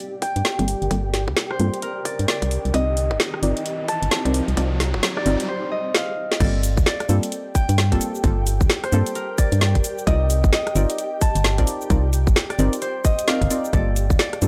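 UK garage in a skippy, bouncy two-step style at 131 BPM, this G minor cut from a longer piece swings its sixteenths and moves between Gm11 and Cm11 chords. A fingerpicked concert harp carries the ringing melody through a tape echo, floating over an ethereal, airy pad with ensemble chorus, tremolo and sidechain pumping, while a very quiet granular cloud pad adds a blurred, evolving haze in the opening build-up. Filter sweeps open the chord stabs and the ambient pad as an electronic riser climbs in, leading to a short break at 5.5 seconds with a drum fill. A tight, up-front electronic kick and a garage kit with a woody snare, metallic hats, rim clicks, shaker and crash enter at 0.2 seconds, and when the drop lands at 6.4 seconds they drive the groove. A hollow, organ-like FM bass with tube saturation sits dark and percussive beneath deep, full-bodied chord stabs thickened with chorus. The whole track has a dry, gritty hardware character with transformer saturation and a digital ambience.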